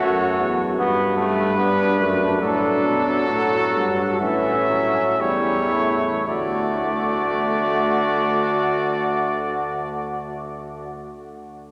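A drenched cathedral reverb with a long tail surrounds this brief fragment of a classical brass canzona, written in imitative style, joyful and elegant in mood. A clear cornet carries the melody with light vibrato, while a warm flugelhorn sings a second line beneath it, also with a light vibrato. A brilliant trombone supplies accompaniment and a dark bass trombone anchors the bass, both sounding roomy and distant, though the bass trombone and cornet are placed up front. All four parts play throughout the 11.1 seconds, moving from F#m through G, D/A and A in the opening phrase, which slows down over its first 6.3 seconds before the second phrase settles on D.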